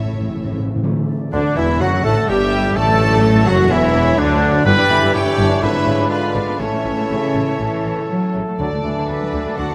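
Cheerful and graceful, this dramatic romantic orchestral passage opens on an up-front timpani fill beneath a lush, vibrato-rich violin melody and a smooth second violin line with light vibrato, very quiet violas, a ringing thumb-plucked harp in arpeggios, distant cellos in the background and close double basses. At 1.3 seconds a bright, airy flute ensemble, a clear oboe, a warm clarinet and a bassoon join, along with a tight, very quiet French horn section on sustained chords, mellow trumpet stabs and a tuba reinforcing the bass. The timpani return at 8.6 seconds, all set in a moderate scoring-stage reverb.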